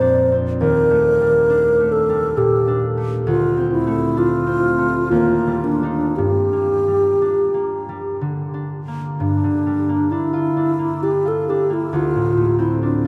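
Hazy and wistful, this impressionist classical duo drifts in a rubato 3/4 at roughly 55-68 BPM in G minor, bathed in the long, wet reverb of a vast cathedral-like space. A wooden-headed alto flute carries the melody up front with an airy, straight, tongued tone. A concert harp supplies mellow, fingerpicked accompaniment that rings beneath it, moving through lush chords such as Ebmaj7#11, Dm7 and Gm7 in this short passage cut from a longer piece.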